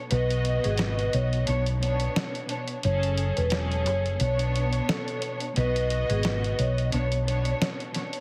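A moody, dark boom-bap hip-hop excerpt at 88 BPM opens at 0.1 s with four parts together. A mellow, airy vibraphone melody, played with soft mallets and a slow motor vibrato and trailed by tape echo, floats over a close, intimate string section bowed sul tasto with a cassette-tape tint. Beneath them, a round, punchy hollow-body electric bass sits up front while a gritty, sampler-style kit of hi-hat and snare, re-recorded in a large room, carries a swung 16th-note feel, with the kick muted from 5.6 s, as the chords move through G#m7, Bmadd9 and F#madd9 in a heavily compressed, radio-like sound.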